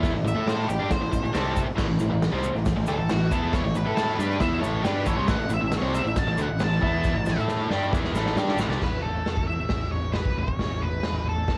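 A biting, overdriven rhythm guitar, double-tracked and up front, drives this rowdy, swaggering garage rock excerpt at 137 BPM in a straight 4/4, riffing from the start until 8.8 seconds. Over it, a dark octave-fuzz lead guitar enters at 0.3 seconds with a distorted solo carrying the melody, its picked tone given a cassette-tape grit. Underneath, a fuzzed, fingered electric bass adds punchy, overdriven low end, while a raw kit with a medium-tuned snare, punchy kick, hi-hat, crash and toms sounds saturated and gritty, its rolled-off top and bright stone-room character sitting up front. A grainy tube shaker stays in the background until 8.8 seconds, when a drum fill that begins at 7.0 seconds leads into a new section where bass, drums and lead carry on to the close. The whole home cassette recording has a light reverb.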